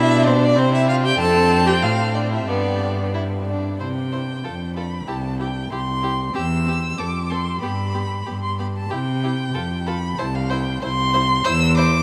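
A quick classical-period movement for string quartet, this spirited and graceful fragment moves in 2/4 with a flexible, rubato feel. The first violin carries the melody up front between C5 and E6, its warm tone shaded with vibrato and expressive portamento, though it sounds distant. The second violin plays a rich, focused second line with a smooth top, while the viola's close accompaniment sits in the background with a soft attack, vibrato and sliding portamento of its own. The cello also stands up front, anchoring the bass in an intimate, sul tasto voice with an airy bow and light vibrato. After an opening phrase, a second section begins at 3.8 s, and it keeps returning to C with brief moments where the chords fall away. The quartet is heard in a vast, echoing cathedral with a long, wet reverb.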